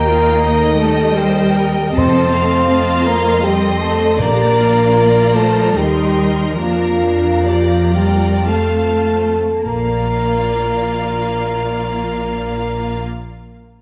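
Dark, distant French horns hold sustained chords beneath a lush, rich violin melody in this serene, rubato classical movement for symphony orchestra in three, where a pure, hollow flute and a second smooth violin line float above expressive viola with portamento, bowed cellos and a clear, intense double bass section, soft-mallet timpani sound round in the background, and the music slows between 3.1 and 9.7 seconds within the moderate reverb of a scoring stage and a dark, warm production.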